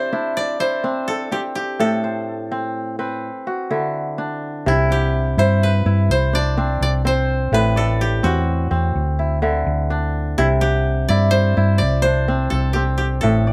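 A ringing, crisp kora spins fingerpicked arpeggios under a bright, woody koto melody played with fingerpicks, and a round, hollow-body fingered electric bass joins at 4.7 seconds in this hypnotic, joyful West African string piece in C lydian, moving in a straight 12/8 at 84 BPM over a C, Am and D cycle with light reverb and a dark production.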